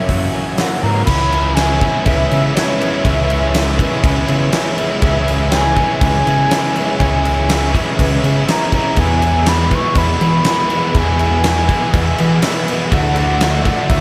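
A breathy, mellow concert flute carries the melody through this dreamy, blissful cut from a longer shoegaze and dream pop rock piece, its expressive vibrato and crisp attack softened by rolled-off highs and trailed by analog delay. It moves at a straight 122 BPM in 4/4 over a big arena drum kit that sits up front from 0.1 seconds, with a fat snare, punchy kick and bright cymbals ringing in a hall. A growling, round overdriven bass joins at the same moment. Behind them sit a twangy, lo-fi guitar through a small old amp picking arpeggios with chorus and delay, a warm crunchy guitar riff with chorus, a second crunchy riff, and a very quiet double-tracked cranked stack guitar. An icy, crystalline glass pad enters at 3.0 seconds with airy sustained chords and a long release. The harmony moves from F#7 to C#m7, then to E and a closing Dadd9, all within a studio ambience.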